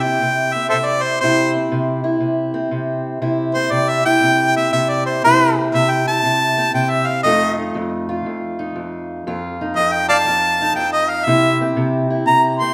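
A clear, up-front harmonica takes a laid-back, soulful solo with vibrato, tongue slaps and scooped notes in a jazz style, over a dark, boxy fingerpicked parlour steel-string acoustic guitar in this swung acoustic country blues at 119 BPM, moving from C to F7 at 7.2 seconds and back to C, all in a reverberant recital hall, cut from a longer piece.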